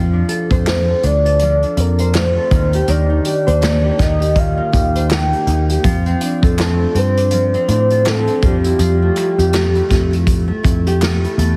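A lazy 4/4 groove with a gentle swing on the sixteenths gives this sunny, hazy bit of indie bedroom pop its easy sway, cut from a longer piece. A fingerpicked nylon-string guitar and a dark, foam-muted vintage electric bass start together at 0.0 seconds. The guitar's full-bodied tone is coloured by analog chorus and a warbly pitch drift, while the round, punchy bass sits up front. An unplugged drum kit joins at 0.3 seconds, with hi-hat, a tight kick and a medium-tuned snare played with bundle sticks in a roomy, distant space. At 0.7 seconds a soft, octave-layered synth lead takes the melody, its triangle, sawtooth and sine tones with a sub octave dressed in tremolo, lush chorus and tape echo, alongside a very quiet, hollow group handclap. Light reverb and small room ambience meet a heavily compressed, radio-like sound, over chords moving from F6 to Eb69 and back before landing on Fmaj9.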